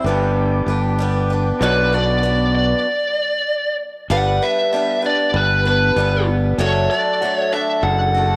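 Open-road and nostalgic, this folk rock and heartland rock cut from a longer piece moves at a straight 96 BPM in 4/4. A growly, punchy fingered electric bass sits up front, joined by a boxy, picked swing-style acoustic guitar, a slightly broken-up, lo-fi electric guitar riff through a small old amp with phaser, and a soft, flute-like tonewheel organ holding chords in the background through a slow rotary speaker. A biting, overdriven lead guitar takes the melody from 1.6 seconds, the band halts for a stop from 2.9 to 4.1 seconds, and the whole is bathed in a moderate echo chamber reverb as the chords move from G and Bm to G and D/F#.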